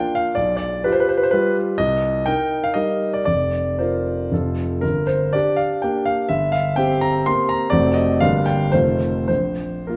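Graceful and proud, this romantic classical dance in 3/4 moves with rubato between 96 and 134 BPM as a solo grand piano, clear and intimate with audible action noise and long sustain, sits up front in a wet recital hall reverb, spanning F1 to C6 through dotted rhythms and chords such as G7/B, Cm7, Fsus4 and F7b9 before the harmony drops away at 9.3 seconds in this fragment cut from a longer piece.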